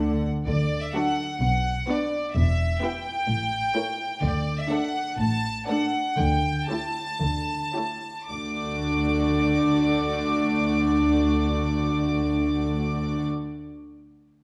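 A quick, cheerful classical-period movement in D major for symphony orchestra, where a rich, floating first violin melody sits over a close bed of intimate second violins, violas and dark cellos and woody double basses, all bowed sul tasto with soft attacks above the basses in a reverberant scoring-stage space, with the tempo easing between 3.3 and 8.3 seconds before a new section begins at 8.3 seconds.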